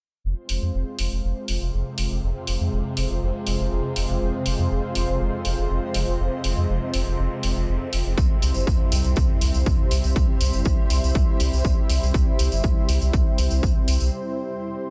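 Hypnotic and dramatic, this melodic techno excerpt at 121 BPM opens on F minor and moves to C at 8.2 seconds, with a lush, warbling unison pad fading in under chorus and a round, deep analog bass with tube saturation sitting up front, both pumping against the sidechain. An overdriven electronic hi-hat runs from the start, while a tense, swarming drone and a blurred granular cloud pad with a moving notch hover in the background in their own reverb. At 8.2 seconds a heavy, overdriven kick drum and a jingly, band-limited tambourine join, and in a short break at 14.1 seconds the pad is heard alone in an otherwise dry mix.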